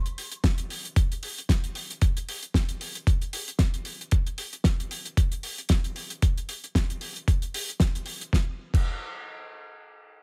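An overdriven electronic kick drum sits up front, entering at 0.4 seconds with a gritty, thumpy, compressed punch at its natural pitch, and it carries the added texture of a small room. Beneath it, a damped 70s drum kit begins at 0.1 seconds, playing crash cymbal, hi-hat and a fat snare with an acoustic, dry character, dark cymbals and a rolled-off top. This is a sunny, groovy nu-disco cut at 114 BPM in 4/4, with a 55% swing on the sixteenths that gives the beat a relaxed bounce. Both drum parts are placed close and forward in the mix, and the kick stands louder than the kit. The two parts play together until 8.9 seconds in this short section taken from a longer piece.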